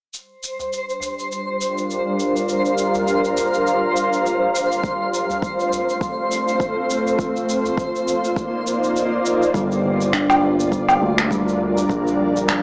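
Organic downtempo with an earthy, meditative mood, heard in a short cut from a longer piece with a loose swing. A cloudy, detuned granular pad holds sustained chords up front, breathing with sidechain pumping and its own reverb, while a filter sweeps across it through the opening section. Tape-softened electronic cabasa, finger snaps and woodblock sit forward in the mix, a twinkling FM granular texture adds octave-up sparkle, and a deep, dry udu murmurs in the background. A layered electronic kick arrives at 4.8 seconds and drops out briefly at 9.0 seconds. At 9.5 seconds a bright steel tongue drum, struck with firm rubber mallets, rings out arpeggios through tape echo, joined by a smooth, gliding sawtooth-and-square synth bass. The whole sits in a moderate concert-hall ambience with a gritty, small-speaker hardware character.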